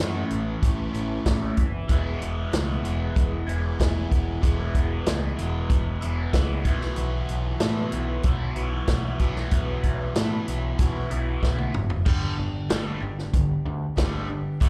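A straight 4/4 groove at 94 BPM drives this swaggering, sunny classic rock excerpt, where a vintage drum kit with a tight kick and medium-tuned snare enters at 0.3 seconds up front beside a growling, round, punchy overdriven bass, while a biting overdriven guitar with phaser and a crunchy background guitar with slapback echo play riffs over a bright picked steel-string acoustic with audible finger squeak, moving through Aadd9, E and Bsus4 before a drum fill at 11.4 seconds leads to a G chord at 12.1 seconds, all heard as a live club gig through the venue's PA.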